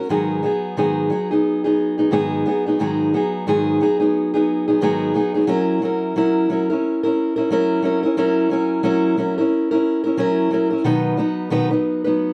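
Carefree and sunny, this short pop excerpt features a lone fingerpicked steel-string acoustic guitar playing solo from start to finish. The guitar sits up front with a warm tone, and faint finger squeaks on the strings add a human touch to its concert-style playing. A lightly swung sixteenth-note feel in 4/4 gives the picking an easy, relaxed lilt. The harmony moves from G#m7 to F#7 before settling on B as a new section begins at 10.8 seconds. Moderate studio reverb surrounds the guitar, and the dark overall production keeps the sound mellow and rounded.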